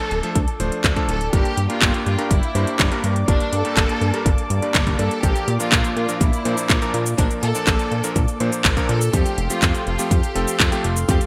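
A bowed violin section with vibrato, rich and distant under digital delay, carries the melody from the start over a smooth, detuned analog pad in the background and clangy stabs from a bright electric grand piano, moving through Dm, Gm, Bb and Fadd9 in this bittersweet, nostalgic italo disco excerpt at 123 BPM in straight 4/4. A saturated, chorused synth bass with a plucky filter joins almost at once, alongside an up-front house kit of cabasa, handclaps and metallic hi-hats in gated reverb, and a punchy electronic kick arrives at 0.4 seconds. The bright 1980s-style digital production sits in light reverb, with a tape-warm edge on the drums.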